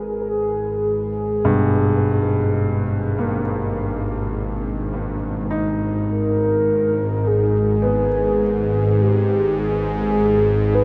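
Set in a straight 4/4, this dark ambient drone excerpt opens with a bowed-like drone fading in low beneath a round, horn-like synth lead whose sustained melody is softened by lush chorus and delay. A warm concert grand piano, with audible action noise and deep bass, enters at 1.4 s with delay-tinged arpeggios, while the drone's detuned, sawtooth string tone stays tense and bright up front. A huge ambient reverb gives the recording its dark, cavernous mood.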